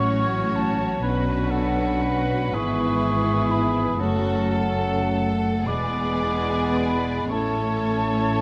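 In a slow, rubato 6/8 lilt of about 34-44 dotted-quarter beats per minute, this serene, tender romantic movement for symphony orchestra is heard as an 8.4-second fragment of a longer piece, moving from F#m/A through Bm and E7 to rest on A. A lush, distant violin section carries the vibrato-rich melody, while a hollow, airy flute, a mellow background clarinet, a cor anglais and a second violin section weave supporting lines above dark, woody, very quiet violas and a soft-attack bassoon. Mellow French horns hold background chords over close, bowed cello and double bass sections, all bathed in a moderate concert hall reverb.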